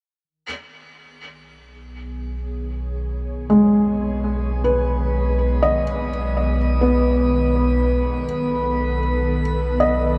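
Ambient music of a serene, gently warm mood, this excerpt drifts in free time over a B13 harmony as an ethereal, airy pad of chorused, detuned voices fades in with sustained chords alongside a deep, rumbling drone that adds an ominous, phased undertone from 1.9 seconds. At 3.5 seconds a soft, felt-muted upright piano enters up front with intimate, echoing arpeggios, its audible action noise close to the ear. A dark production and a shimmering reverb with an 8.8-second tail wrap the whole in a hazy, suspended glow.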